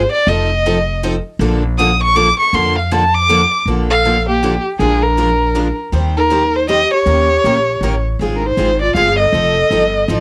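Acoustic string swing in the jazz manouche style: a charming, swinging tune at 159 BPM in 3/4 and Bb major, cut from a longer piece, where a rich, boxy bowed violin sings the melody up front with vibrato and portamento, soloing through the opening 3.7 seconds over two bright, freshly strung picked steel-string acoustic guitars (one with audible finger squeak, the other a full-bodied dreadnought sitting in the background) and a woody, thumpy pizzicato upright bass on gut strings, until a dark, breathy subtone clarinet with scooped notes slips in at 3.9 seconds with an intimate second line, all captured as a cassette home recording with light reverb and a tape tint on the violin, guitars and clarinet.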